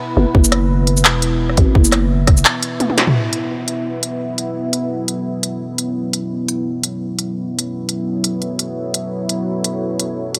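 A half-time groove at 171 BPM with a light 16th-note swing drives this dark, cinematic drum and bass fragment in F# minor: a deep, detuned sawtooth pad with chorus and sidechain pumping sustains moody chords throughout, a growling, buzzy 808-style bass and a hard-clipped, tape-warm electronic kick hit up front only until 2.4 s, and an industrial kit of clanging snare, crisp hats, handclaps, rim click, shaker and toms plays a fill from 2.8 s into a band accent before the F#m chord arrives at 3.2 s, the whole mix set inside a huge ambient reverb.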